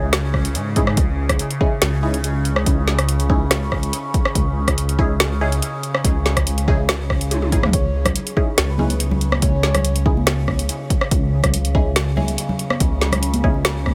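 A brooding, meditative deep dubstep excerpt in C# minor at 142 BPM with a half-time feel opens on a resonant sawtooth drone with moving overtones and chorus, muted phaser-treated dub chord stabs on a C#madd9 with tape grit and dub echo, and a rumbling, saturated detuned saw bass up front, joined almost at once by a punchy electronic kick and a deep house kit with woody snare, dark hats, rim clicks and toms, before a short drum fill leads to a breathy, flute-like synth lead with vibrato and dub echo in the background at 7.7 seconds and ringing congas at 8.1 seconds.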